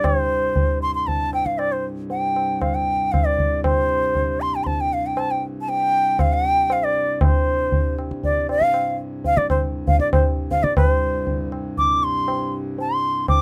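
A bright bansuri carries the melody up front in this serene, radiant Hindustani classical excerpt in raga durga on C, its pure bamboo tone marked by crisp attacks, expressive vibrato and lifted highs as it ranges from C5 to D6. Close, low-tuned tabla with a short ring keeps a straight 7/4 pulse at 118 BPM, while a pedal harmonium holds a mellow, reedy, breathing drone from C2 to G2 in a boxy small room, set further back in the mix. Light reverb gives a gentle space, and a new section begins at 10.8 seconds before the cut at 13.4 seconds.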